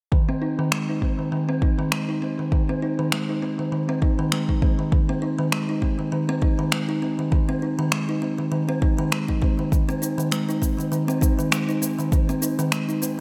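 Organic downtempo at 100 BPM in 4/4 with a light 16th-note swing, meditative and hypnotic in mood, cut from a longer piece. A woody, hollow-bodied kalimba plays ringing arpeggios from Eb3 to Eb4, close-miked and up front through a low-pass filter and delay, while a deep electronic kick plays alongside it until 12.3 seconds. Produced finger snaps and cabasa join at 0.7 seconds and carry on to the end at 13.2 seconds, with studio reverb on the drums and a light digital ambience around the whole mix.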